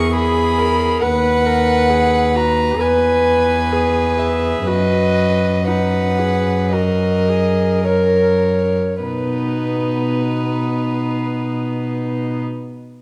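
Set in a dark, reverberant recital hall, this short cut from a longer classical piece captures a string quartet in a slow, lyrical romantic movement with a serene mood and a flexible, rubato pulse that slows through its first 9.0 seconds. The first violin carries the melody with a rich tone, light vibrato and an airy, intimate sul tasto bow, heard close and with a soft attack. Beneath it, the second violin plays a pure, floating inner line, while the viola adds gentle, warm accompaniment, also played softly over the fingerboard. The cello anchors the bass, sitting up front in the balance yet carrying a distant, floating quality. The harmony drifts through gentle changes before settling onto a home chord at 9.0 seconds, where a brief new section begins and the four players continue together to the end at 12.4 seconds.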